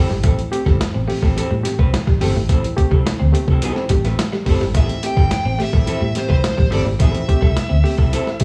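Dry and close, with only a small room around it, this cool, sly funk groove in A minor moves at 106 BPM in a straight 4/4, sitting on a single Am7 chord as a fragment of a longer piece. A gritty, compressed sampler-style drum kit sits up front, its thumpy kick, medium-tuned snare and hi-hat carrying a tape-softened grit, while a vintage fingered electric bass adds a dark, round, foam-muted low end. A clean, picked archtop guitar plays accompaniment with a hollow body tone, and a semi-hollow electric guitar in the background picks out a small riff. A reedy, barky electric piano, lightly overdriven and shimmering with fast tremolo through its built-in speakers, adds bright stabs from the background. At 4.8 seconds a nasal lead guitar with a parked wah and overdrive enters with a picked melody in its upper register, running to the end at 8.4 seconds.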